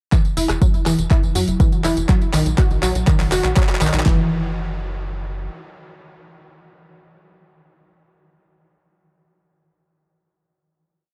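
A lush, detuned unison pluck leads this short, expansive and emotional progressive house piece at 122 BPM, its arpeggiated six-step loop drifting against the bar with digital delay, sidechain pumping and a filter sweep through the build from 0.1 to 4.1 seconds, over Esus2/F# then B5 chords. An up-front deep house kit drives a four-on-the-floor deep kick, fat snare and claps through a drum fill, joined by quieter tape-warm hats, rim, tambourine and claps, while a tight, nasal sequencer bass gallops in sixteenth notes from 0.4 seconds. The bass rings on alone until 5.5 seconds into the closing section, in a dark production with light reverb and digital ambience.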